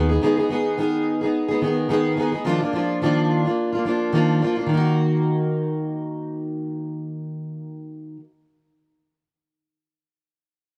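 A fingerpicked, plugged-in steel-string acoustic guitar carries this brief, tender pop passage from start to finish, double-tracked and placed up front across the full 8.3 seconds. Its tone is warm with a concert polish, moving through a range from Eb3 to Ab4 as it provides the accompaniment. At 108 BPM in 4/4 with a light 16th-note swing, the reflective mood sits in Eb harmonic minor, with chords moving from Abm/Eb to Bb/Eb at 2.5 seconds before settling on Ebm at 4.7 seconds, where a second section begins. Light reverb and a sense of studio ambience give the guitar a little air around it. Cut from a longer piece, the passage feels like a tender, inward moment.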